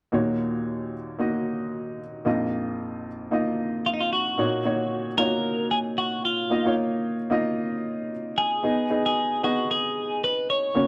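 A bright, twangy twelve-string electric guitar carries the melody from 3.9 seconds, its clean, compressed picking up front and doubled by a slapback echo. Underneath, a clear upright piano accompanies from the start, woody and intimate with audible action noise and short sustain, moving through chords in Eb minor at 113 BPM with a light sixteenth-note swing. This earnest, driving pop excerpt has the dry, close sound of a 1970s studio and is cut from a longer piece.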